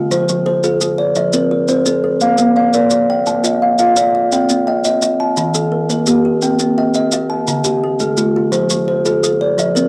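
A rippling 12/8 cycle at 114 BPM drives this warm Southern African traditional piece in the mbira style, built on two kalimbas playing interlocking arpeggios over a progression that moves from F through Bb, Cm, Eb and Dm back to F. The lead kalimba sits up front with a bright, ringing, woody thumbnail pluck from a solid board, while the second, quieter one weaves in with a short, hollow-box thumb pluck; both carry a cassette-tape grain and plate reverb. Close, dry maracas add a mellow, grainy pulse from 0.1 seconds, all set in a small room on a home cassette recording cut from a longer piece.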